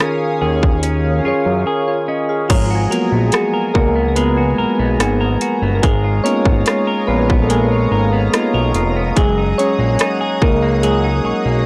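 A dry, gritty cassette-tape sound with transformer saturation frames this sensual, moody contemporary R&B excerpt at 72 BPM in G# dorian. It is built on a trap drum kit with a hard-clipped kick, metallic hats, crash cymbal and rim clicks, a fat, nasal analog bass with tube saturation entering at 0.4 seconds, and a clean, twangy electric guitar playing arpeggios through analog delay. Mellow electric-piano-like synth keys with chorus and tremolo sit up front and take a solo from 2.5 seconds after a short break, over a shimmering pulse-width pad holding sustained chords; a dark, wave-folded pluck joins in the background at that point as the harmony moves from D#9sus4 through G#m9 and C#13/G# to F#69.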